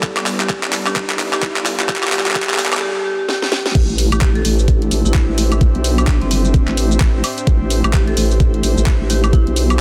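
Swung sixteenth-note garage drums with a cracking snare and bright hats sit up front over a knocking, tape-warm kick in this swaggering, aggressive bass house excerpt, where a very quiet electronic riser gives way to an impact as the drop arrives at 3.8 s, a nasal, saturated vowel-sweep wobble bass pumps in the foreground, a deep, moody ambient pad carrying a filter sweep sustains the chords while an airy, breathy pad adds texture, and a marimba with medium hard mallets plays a delayed melody in the background.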